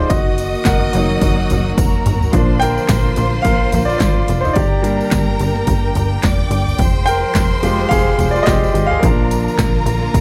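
Piano-driven pop in Bb mixolydian at 108 BPM with a light sixteenth-note swing, this anthemic, uplifting excerpt spotlights a clear, open baby grand piano up front, backed by a punchy house drum kit with layered kick, snare, handclaps, hats and toms (a drum fill at 1.8 seconds), a plucky, funky analog bass, a lush, distant violin section carrying a second line, a focused string section holding background chords, and a jingly tambourine, all in a small room over chords moving from Ebm/Gb through Bb, Gm and Fmadd9 back to Bb.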